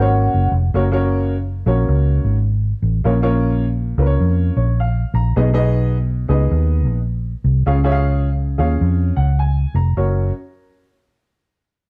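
Uplifting and warm, this brief cut from a longer uptempo 1960s-style soul piece in F# major swings at 104 BPM, as a metallic, ringing vibraphone struck with hard mallets sounds only its opening half second while a dark, woody, boxy upright piano carries the accompaniment from the start with fills at 4.2 and 8.8 seconds, all over a round, foam-muted vintage electric bass sitting up front in a light studio reverb.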